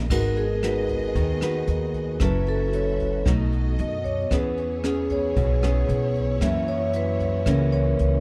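Bossa nova at 114 BPM in G# minor, smooth and intimate, this brief cut features a dry, ringing vibraphone solo played with medium hard mallets and the motor off, moving over G#m7, F#m7, B7, E6 and F#7. Underneath, a fingerpicked nylon-string guitar with fresh strings and audible finger squeak gives full-bodied support, a woody, thumpy pizzicato upright bass sits up front, and a brushed jazz kit adds dark cymbals, hi-hat, rim click and a boomy kick. A lush bowed string section with soft attack and vibrato holds sustained chords in the background, all captured with close, detailed microphones and little reverb.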